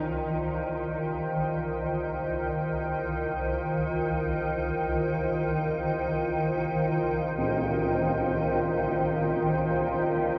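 Dark ambient drone in free time, ominous and desolate, this excerpt holds an Eb69/C chord throughout, tuned to A4 = 441 Hz. Up front, a moody analog pad of detuned sawtooth and triangle tones with a sub octave sustains chords through chorus, while beneath it a swarming, tense drone of detuned sines evolves with a moving notch and granular grain in its own reverb. At 7.4 s a close, dry tam-tam strikes briefly, and the whole is bathed in a huge 7.8-second reverb and the worn, warbling pitch drift of old cassette tape.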